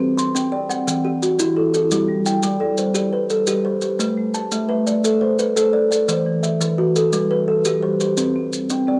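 Rippling and warm, this short excerpt from a longer piece is a southern African traditional mbira-style interlocking cycle in 12/8 at 115 BPM, set in G major and tuned slightly low. An up-front kalimba rings out woody, hollow arpeggios while a marimba with soft mallets adds mellow, round, dark arpeggios beneath it, both carrying a cassette-tape tint, and grainy maracas enter at 0.2 seconds. The home cassette recording sits in a moderate studio reverb, with the cycle moving through C5, Em, G, Am and E5 before returning to C5.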